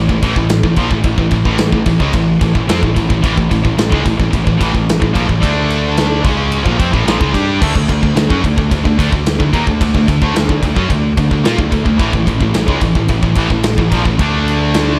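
Heavy metal with a relentless, epic mood, heard in a short excerpt cut from a longer piece. Three bright, high-gain distorted electric guitars play picked riffs throughout, one of them double-tracked, all sitting in the background of the mix while the harmony moves between A and D5. A growling, punchy electric bass with overdrive carries the low end, its tone both direct and amped. The big acoustic drum kit is placed up front, with a tight kick, a medium-tuned snare, and bright crash and ride cymbals that ring in a natural, big-room sound. The production is dark and warm, set in a small room ambience.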